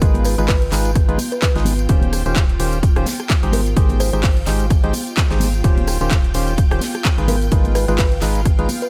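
Piano house at 128 BPM in 4/4 with a light 16th-note swing, this feel-good, euphoric excerpt cut from a longer piece rides a chord loop that moves from Abm6 through Eb13 and Abmaj7 and back. An up-front, punchy electronic kick with overdrive anchors the groove, joined by an overdriven house kit of handclaps, rim clicks and bright hats, while a very quiet, mid-forward acoustic kit adds hi-hat and a medium-tuned snare. Tambourine and congas played with soft hands bring an acoustic, small-room touch. A hollow, dark organ-like FM bass with a fast, decaying attack pumps against the kick, as does a percussive organ stab riff built from a sine, triangle and sawtooth blend with a noise layer and ring modulation, dressed in chorus and delay. Behind them, a shimmering vintage string machine holds soft-attack violin chords with ensemble chorus and the same sidechain pumping. A woody, mellow kalimba plucks short delayed notes in the background from 0.3 to 4.2 seconds and returns at 7.3 seconds, all set in a small room ambience.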